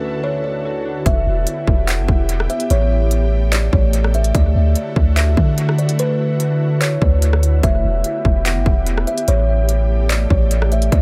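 A woody, ringing kalimba melody with dub echo floats over an ethereal, airy, sidechain-pumping pad, joined by glassy digital arpeggios in the background until 1.1 seconds, when a deep, dark 808-style bass and an up-front trap kit of hard-clipped kick, crisp hats, handclaps and rim clicks enter to set a blissful, floating half-time cloud-rap groove at 146 BPM in D major, moving through Em and A7 chords in an echo-heavy mix cut from a longer piece.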